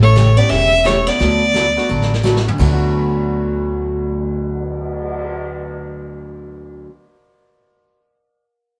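A swung 4/4 pulse at 172 BPM drives this playful, cheerful western swing in D major, where a rich, focused bowed fiddle carries the melody up front over a clean hollow-body archtop guitar's second line in the background, a bright jumbo acoustic guitar with finger squeak, a woody pizzicato upright bass on gut strings, a vintage brush kit with dark cymbals and a punchy kick that plays a fill from 1.9 to 2.6 s, and a clear, open upright piano entering at 0.4 s, the band playing live together in one room with moderate reverb.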